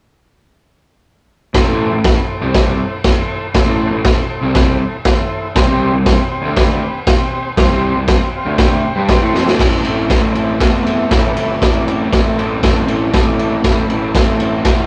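Garage rock at 119 BPM in A minor, swaggering and gritty, this short cut opens at 1.5 seconds with a crunchy, double-tracked overdriven guitar riff over a growly fuzz bass sitting in the background and a boomy, up-front drum kit with sampler grit and a rolled-off top. A buzzy combo organ holds sustained chords with heavy vibrato, adding fills at 4.8 and 8.1 seconds, while the harmony moves from Am to C5 and back to Am as a drum fill at 9.3 seconds leads into a new section. The whole take carries a rough rehearsal-room feel with tube saturation and cassette tape colour.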